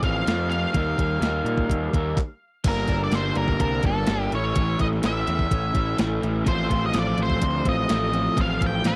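A straight 4/4 pulse at 126 BPM comes from a clean 12-bit drum machine, up front with a thumpy kick, medium-tuned snare, hi-hat, handclaps and crash, all overdriven in a sampler-style punch. This jangly, upbeat indie rock excerpt pairs a punchy, bright fuzz bass with a crunchy, picked rhythm guitar riff, while a dark octave-fuzz lead carries the melody up front. During a brief stop from 2.2 to 2.7 seconds, a raw garage guitar with ensemble chorus joins in the background at 2.6 seconds, all within a dry, close 1970s-style room as the chords move through Gm, A and F/A.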